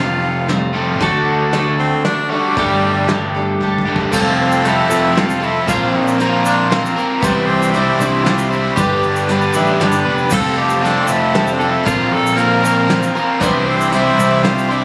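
Nostalgic and open-road in spirit, this folk rock and heartland rock passage in a straight 3/4 sets a bright, forceful tenor saxophone melody with light vibrato over picked steel-string acoustic guitar with audible finger squeak, an up-front, double-tracked overdriven guitar riff with crunch, a punchy picked electric bass, and a soft brush drum kit whose fill at 3.6 seconds leads into the second section. At 4.1 seconds a reedy, sweet accordion with light tremolo tuning slips in behind with sustained chords, joined by a grainy tube shaker. Chords built on Fadd9, Bbsus2 and Cadd9 give the harmony an airy openness, and the whole is heard through small-room ambience with the slightly distant feel of a phone recording in a club.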